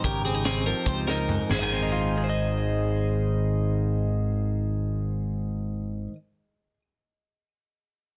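Math rock with a midwest emo feel, this short, intricate and bright fragment from a longer piece moves in an odd 7/8 metre. A direct-recorded clean electric guitar carries the accompaniment, its bright, picked and scooped tone sitting up front, while a twelve-string electric guitar spins twangy, compressed arpeggios coloured by analog chorus and analog delay. Beneath them a growling fingered electric bass, overdriven and up front, holds the low end. A crisp fusion drum kit with a high-tuned snare and punchy kick plays only until 1.6 seconds, slowing down and rolling through a drum fill before dropping out. The opening Dbmaj9#11 harmony gives way to Ab at 1.5 seconds, leaving the guitars and bass to ring on in a dry, dense and heavily limited modern mix.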